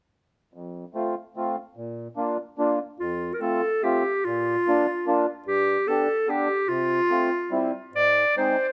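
Jolly and festive, this short alpine folk dance-band excerpt in 3/4 at 146 BPM with a light swing opens with a reedy, mellow accordion carrying the accompaniment from 0.5 seconds, its slow-beating, vintage tone sitting up front, before a clear, close-miked clarinet in classical style takes the solo melody at 3.0 seconds with a touch of tape echo, all set in a small room over chords moving from F and Bb through G and C to a closing Ab.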